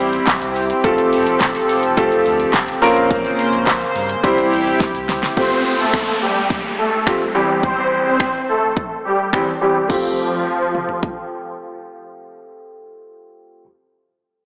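Dance-pop at 106 BPM in F major, this carefree, euphoric piece opens with a clear concert grand piano and a shimmering, retro chorused pulse-width pad pumping against a deep sub bass with octave, while a punchy pop drum kit with fat snare, metallic hats, snaps, claps and toms drives alongside a grainy, very quiet tube shaker. After a drum fill, at 5.4 s the pad, bass and shaker drop out as a detuned filtered supersaw swell carries the melody through digital delay and a filter sweep, with an electronic downlifter beneath, over chords moving from Fadd9 to C/E. Lush hall reverb bathes the blown-out, overdriven mix, which has a small-speaker character. The drums stop at 11.2 s, and the piano plays on after the supersaw swell closes at 11.6 s.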